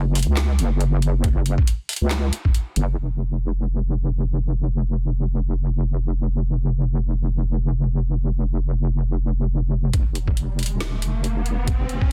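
Deep dubstep with a brooding, heavy mood and a half-time, swung feel, cut from a longer piece. A saturated, detuned square-and-sine wobble bass sits up front throughout, joined by a gritty, thumpy, pitched-down kick and a garage kit of handclaps, woody snare and filtered metallic hats in the opening drop, which fall away until the kit and kick return at 9.9 seconds for a build-up. An electronic riser enters at 10.4 seconds, all in a dry, dense, heavily limited modern mix.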